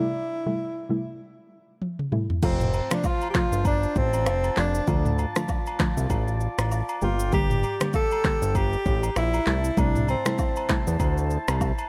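Romantic and breezy, this afrobeats excerpt opens on a breathy, vibrato-laced tenor saxophone with digital delay over a soft, round pluck thickened by chorus, before a drum fill at 1.8 s brings in an electronic afro-pop kit with a deep kick, snaps, claps and shaker, and from 2.4 s a fat, saturated analog bass, a vintage woodwind section pumping under sidechain, and close agogo bells and woodblock in the background fill out an intimate, up-front mix.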